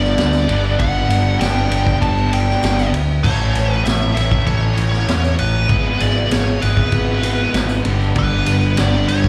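A straight 4/4 groove at 98 BPM drives this sunny, confident classic rock excerpt, with a vintage drum kit of punchy kick, medium-tuned snare and dark ride and crash cymbals, a barely audible jingly tambourine, and a growling picked bass that sits up front with overdrive. A bright, double-tracked distorted guitar plays the riff over a G, A, E/G# and G progression, while a nasal lead guitar with a parked wah carries the melody through overdrive, slapback echo and tape echo. It sounds like a live club gig heard through the venue's PA, with only a touch of room reverb.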